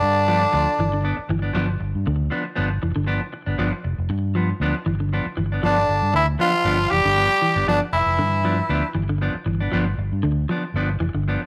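A raspy, gritty tenor saxophone carries the melody over a bright bass trombone with scooped notes in the background and a very quiet, bright trumpet, while a clean, dark electric guitar plays stabs and a round, punchy fingered electric bass sits up front in this joyful, funky afrobeat excerpt at 118 BPM in G mixolydian, resting on a G7 chord. The horns play in short bursts at the very start and again from 5.6 to 8.9 seconds. Throughout, a second clean guitar adds warm, picked arpeggios treated with tremolo and slapback echo, all in a light reverb with a swung sixteenth-note feel.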